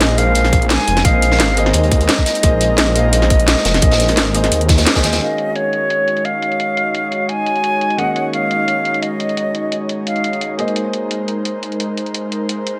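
A straight, rolling liquid drum and bass groove drives this melancholic passage from a longer piece. An up-front electronic kit with a cracking snare and metallic hats is layered over a tight electronic kick, while a gritty, saturated breakbeat kit with a rolled-off top sits in the background. A menacing, detuned saw bass swells beneath them until the band hits an accent at 4.9 seconds. At 5.2 seconds the breakbeat and bass drop away, and a filter sweep moves across the pad as the harmony shifts toward a minor eleventh chord. Throughout, a dark, boxy grand piano with audible action noise and a long sustain plays accompaniment, and an airy, breathy pad holds soft chords with chorus and sidechain pumping. Above it all, a pure concert flute carries an expressive, vibrato-rich melody through a digital delay until it stops at 10.6 seconds. The piano, pad and up-front electronic kit carry on in a small, lightly reverberant room.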